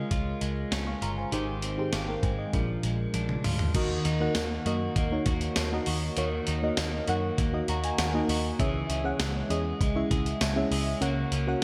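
Urgent and moody, this short cut from a longer 1980s-style pop piece rides a straight 4/4 groove, with a mellow FM electric piano laying down soft, rounded chords through chorus, phaser and slapback echo while an electric guitar at the edge of break-up picks a riff with subtle chorus and delay. Underneath, a vintage muted picked electric bass sits dark and foam-muted, and a breakbeat sampler-style drum kit sounds gritty and compressed up front, with a thumpy kick, medium-tuned snare, hi-hat, tambourine, toms and crash. A drum fill at 3.1 seconds leads into the second section, the electric piano adds a fill at 7.4 seconds, and a concert hall reverb gives the whole a big arena sound.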